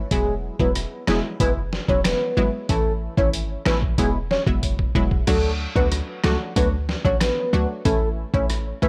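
A punchy, wave-folded chord stab with chorus and a tight, sine-based 808-style bass open this summery, sunny dancehall excerpt at 93 BPM in straight 4/4, moving through Eadd9, A and D with little reverb. A soft, round octave-layered synth lead with a sub octave, vibrato, chorus, tremolo and delay carries the melody over a gritty, pitched-down trip hop sampler-style drum kit, up front and compressed, with a thumpy kick, medium-tuned snare, rim click, hi-hat and crash cymbal. A drum fill arrives at 4.6 seconds, just before the harmony shifts to D at 5.3 seconds.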